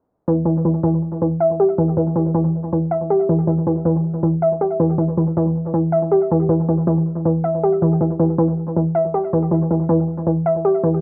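A hollow, detuned square-wave pluck carries this eerie, melancholic hip hop excerpt, playing arpeggios from E3 to E5 over a single E minor chord at 159 BPM in a half-time feel. Its bouncy, fast-attack notes decay away, thickened by a sub octave and a noise layer and coloured by chorus and tape echo, sitting bright and up front. A filter sweep runs through the whole passage from 0.3 to 11.0 seconds, while light reverb and the low-passed, cassette-recorded sound give it a dim, homemade haze.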